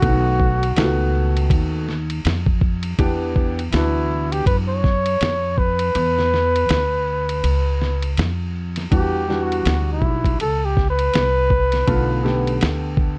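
The recording has a dark, warm production with a light reverb, giving this cut from a longer jazz-hop piece a nocturnal, cool mood over a swung groove. Up front, a lo-fi sampler-style drum kit sounds compressed, pitched down and muffled, with a thumpy kick, a fat snare, hi-hat and ride cymbal. The kick drops out from 5.9 to 8.9 seconds. A pizzicato upright bass, woody and dark with steel strings, sits close in the mix, while an upright piano with a polished, present tone and long sustain plays the chords beneath. Leading the melody, a warm flugelhorn in jazz style uses a soft attack, light vibrato and scooped notes, taking a solo from 8.9 seconds before it stops at 12.7 seconds. The harmony moves from B7 through E7(no3) and Em9 to a closing Bm7b5.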